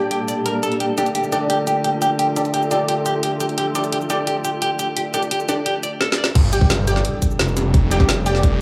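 A metallic, inharmonic FM drone with a nasal, warbling edge opens this dark, mechanical drum and bass excerpt at 173 BPM in G minor, sustaining chords under chorus and pumping against the beat, while a bold, punchy orchestra-hit-like synth stab fires bright detuned sawtooth hits through digital delay and a blurred, cloudy granular pad evolves in the background. A clean, dark electric guitar sits up front with picked arpeggios, coloured by phaser, delay and a low-pass filter that sweeps across the opening section alongside a filter sweep on the stab. The electronic drum kit carries a woody snare, bright hi-hats, shaker and crash, and a drum fill at 6.0 seconds leads into the drop. The guitar stops at 6.3 seconds, and at 6.4 seconds a swirling, thick, saturated saw bass with a detuned, phased tone arrives up front together with a tight electronic kick and a very quiet impact. The chords move from Gmadd9 to Dm and back to Gmadd9, and the whole piece sits in a small digital room ambience.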